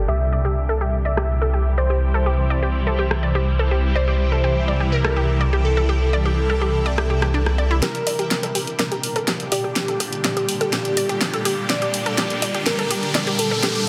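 Progressive house at 124 BPM in G dorian, driving and dreamy, this cut from a longer piece opens with a shimmering, ethereal pad with chorus, phaser and reverb over a deep, rumbling detuned saw bass sitting up front, while a catchy, punchy unison lead with dub echo carries the melody and a round analog pluck spins chorused, echoing arpeggios under a filter sweep. A layered electronic pop kit with a fat snare, hi-hat and rim click enters at 1.2 seconds, and the chords move from C to Gm at 7.8 seconds as a build-up with a drum fill begins. A background riser joins at 10.1 seconds, all within a dense, heavily limited master and light digital ambience.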